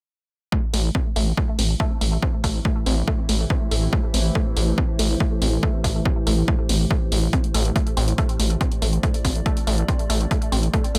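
A gritty, saturated sawtooth synth bass pinned on A1 drives this dark, intense stretch of peak-time techno in A minor at 141 BPM, alongside a punchy, tape-warm electronic kick and hi-hat re-recorded in a small room, a squelchy, bright resonant blip pluck riff treated with phaser, tube saturation, analog delay and a filter sweep, a mellow analog drone that enters at 2.0 seconds in the background, and a warbling, lo-fi tape-like pad fading in beneath, with sidechain pumping on the bass, hats, pluck, drone and pad in a dry, echo-heavy mix.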